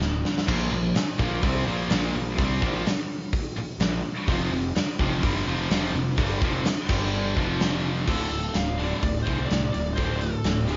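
A straight 4/4 pulse at 126 BPM drives this menacing, heavy hard rock excerpt in D minor, opening with a drum fill under the band before a double-tracked high-gain guitar joins at 0.5 seconds. The big rock drum kit sits up front with a punchy kick, a medium-tuned snare, hi-hat and crash cymbal, its acoustic big-room sound mid-forward with a rolled-off top. Beneath it, a fuzz picked electric bass growls with overdrive, while a distorted electric guitar and two high-gain distorted guitars, one double-tracked, grind out bright, picked riffs from the background, moving through Bb5, F5 and G5 power chords. At 8.1 seconds the double-tracked riff guitar drops out as the music shifts to D5 and a bright, high-gain lead guitar takes up a melody in its upper register. The band sounds as though it is playing live in one room, with light reverb and a dark, rounded overall tone that holds back the highest frequencies.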